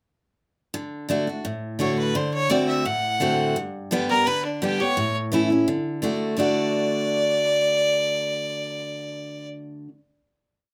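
A picked steel-string acoustic guitar opens the piece at 0.7 s, setting a lively, joyful bluegrass pulse at 171 BPM in 4/4 with a straight feel in D major. Its bright, full-bodied dreadnought tone sits up front as it plays an alternating bass and strum accompaniment through a D, D7, G, A and D progression. At 1.8 s a single bowed fiddle enters with the melody, a fiddle tune in running eighth notes whose biting, nasal edge and light vibrato give it an earthy bite. The fiddle also sits up front, ringing out clearly alongside the guitar. After one brief section, the two settle onto a final chord from 6.4 s, all within a small room ambience that adds a modest sense of space to the short, complete piece.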